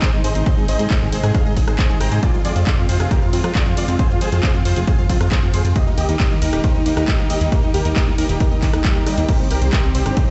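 Soaring and euphoric, this uplifting trance excerpt rides a huge, detuned supersaw lead with vibrato and tape echo, carried over a lush unison pad with chorus and a bright, phased unison pluck playing arpeggios in the background, all moving through Ab, Fm, Eb and Cm. An up-front, layered electronic kick anchors the groove alongside a tape-warm analog drum machine of crash and ride cymbals, handclaps, hi-hat, rim click and shaker, while a funky, evolving analog bass with ring modulation and a filter pluck enters at 0.1 seconds. The sound is dark-topped and played back on a big system in a bare stone room, with the lead, pad, pluck, bass and drum-machine hats, cymbals and percussion all pumping to the kick.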